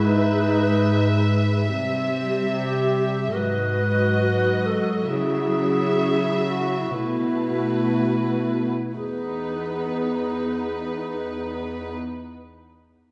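In a rubato 4/4 between 57 and 73 BPM that slows over the first 9.0 seconds, this tender, uplifting cinematic passage in E major is cut from a longer piece, moving through chords such as Emaj7/G#, C and G#m7 before settling on a B7sus4 and returning to Emaj7. An airy alto flute with vibrato carries the melody alongside an intimate chamber violin section played sul tasto with light vibrato, while a dark, woody, lush viola section accompanies and a pure, floating cello section holds the bass. All four play throughout, heard from further back in a reverberant scoring stage with a 2.0-second tail.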